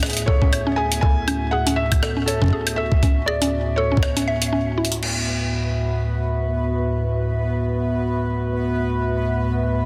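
A warbly, detuned pad of dark, nostalgic chords opens this playful, wistful IDM excerpt at 0.0 seconds, sitting up front alongside a gritty, pitched-up jungle-style sampler kit of crash, hi-hat, rim click and woodblock, tinged with delay. At 120 BPM in 4/4 with a light swing on the 16ths, a thumpy, compressed electronic kick drives the first half, while a soft, felt-muted upright piano carries a mellow, intimate melody through tape echo and a woody, round mallet-like FM pluck spins chorused arpeggios beneath it. The harmony rests on Amaj7/D in D Lydian. The kick drops out at 4.0 seconds and the piano and pluck end by 4.8 seconds. After a drum fill at 4.8 seconds the kit falls away, leaving the lo-fi pad to settle onto D69. From 5.3 seconds a faint, bright, resonant sawtooth texture bubbles through random filter steps, softened by chorus and reverb. A lush hall reverb surrounds everything in a dense, heavily limited modern master.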